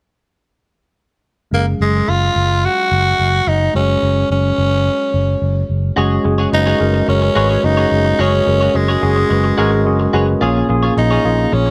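Pop with a nostalgic, uplifting mood, led by a raspy, growling tenor saxophone melody with digital delay over a worn, slightly out-of-tune tine electric piano and an amped, up-front fingered electric bass, with a bright, lush-chorused twelve-string electric guitar riff joining at 6.0 s in this short cut from a longer piece.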